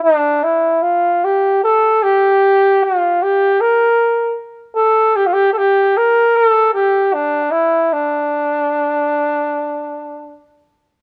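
Caucasian folk lament, mournful and longing, in which a lone flugelhorn with a warm tone and light vibrato plays in a classical style at a free, rubato pace in 4/4 from 0.0 to 10.4 s, sitting up front yet sounding distant and roomy, with a slapback echo on the horn and light reverb over an outdoor recording, in a brief fragment cut from a longer piece.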